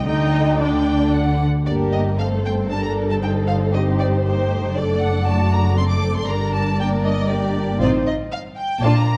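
A quick classical-period movement for string orchestra in G minor, this short cut from a longer piece moves at 117 BPM in 3/4 with an urgent, dramatic mood. The first violins carry the melody with a focused, rich tone and a smooth top, while the second violins add a softer, more distant line beneath them. Violas supply a dark, lush accompaniment with expressive portamento. Cellos and double basses share the bass, the cellos sounding lush and symphonic and the basses smooth and even, all sections bowed with vibrato. After an opening that moves from Dsus4 to D, the music settles at 1.7 seconds into a passage built on Gm, Am7b5/G, D/F# and F7/A, heard through a moderate scoring-stage reverb in a dark production.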